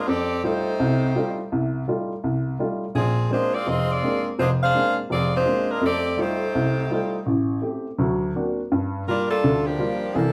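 Jazz with a brassy, swinging feel, this short fragment of a longer piece features an edgy, close-miked saxophone section carrying the melody with vibrato, sitting up front alongside a warm, present baby grand piano that supplies the accompaniment from 0.1 s to the cut at 10.3 s. The harmony moves from F9 to Bb9 and back before stepping through Am7, Daug7 and Gm7. A wet, large studio reverb places the ensemble as if heard from further back in the room.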